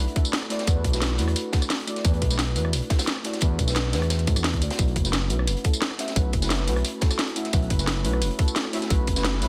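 A straight 4/4 groove at 175 BPM drives this soulful, melancholic liquid drum and bass fragment in B minor, tuned to A4 = 436 Hz. A tight, up-front electronic kick arrives at 0.2 s alongside a layered, produced kit with a cracking snare, metallic hats, rim click and tambourine. A second breakbeat kit sits in the background, acoustic and gritty, its high-tuned snare and hats dark, high-pass filtered and rolled off at the top. From the start a smooth synth bass holds the low end between F#1 and A2, blending sawtooth, square and triangle tones with ring modulation and saturation into a sustained, fast-attack sound. Above it a deep, mellow chord stab built from detuned sawtooth, triangle and sine waves decays softly through chorus, phaser and delay, with a filter sweep and moving notch shading its tone. The harmony moves from E9sus4 to B9sus4 at 4.8 s, framed by light reverb and a dense, heavily limited modern master.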